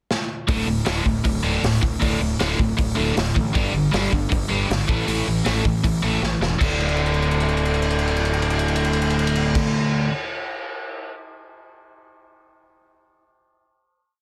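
A dense, heavily limited master with light reverb frames this energetic, rowdy punk rock piece at 157 BPM in straight 4/4, which opens with a quick fill on a raw garage drum kit before the band enters at 0.5 seconds. A biting, double-tracked overdriven guitar plays palm-muted eighth notes through a D5, G5 and A5 riff, and a fuzz-laden picked bass drives eighth notes beneath it. The saturated, gritty drums pump in a small room with a punchy kick and a fast punk groove, then play a long fill over the final D5 chord that arrives at 6.6 seconds, with the guitar sounding until 10.1 seconds.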